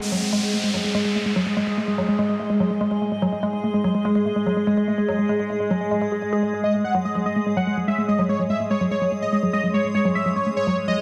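Driving, psychedelic trance excerpt in which a woody, wave-folded pluck riff sits dark and up front under a filter sweep, wrapped by an overtone-sweeping resonant drone of sustained chords, a cloudy, evolving granular pad, and an electronic downlifter that falls away by 3.3 seconds, before a thick, bold, detuned unison lead with vibrato and tape echo takes the melody at 6.6 seconds, all set in a lush hall ambience with a dense, heavily limited modern master.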